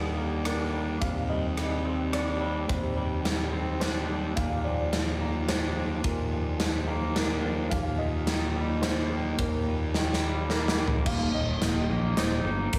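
Cinematic and soaring, this post-rock passage in Eb major moves at 108 BPM in a straight 3/4. A clean, twangy electric guitar plays compressed arpeggios from the start, colored by analog chorus, digital delay and slapback echo, over a fuzzy, round, overdriven fingered bass that sits up front. At 0.5 seconds a soft, felt-muted upright piano adds intimate, mellow arpeggios in the background, its action noise audible and its tone shaped by its own delay and slapback echo. A big rock drum kit enters at the same moment, with a punchy kick, a medium-tuned snare and bright cymbals, and a drum fill at 9.9 seconds carries the music into a new section. The harmony rests over an Eb pedal, moving from Gm/Eb through Cmadd9/Eb and Bb/Eb before settling on Eb, all within a lush hall reverb and a big arena sound.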